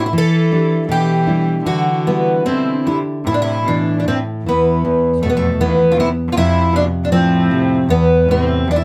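A fingerpicked twelve-string acoustic guitar carries the shimmering, octave-doubled melody up front in this mournful, longing fado-style ballad excerpt at 77 BPM in a rubato 2/4, joined throughout by a bright, biting bowed cello with light vibrato on a second line and a dark, full-bodied nylon-string guitar accompaniment with audible finger squeak, all in light reverb as the music moves from E minor to A minor at 3.2 seconds.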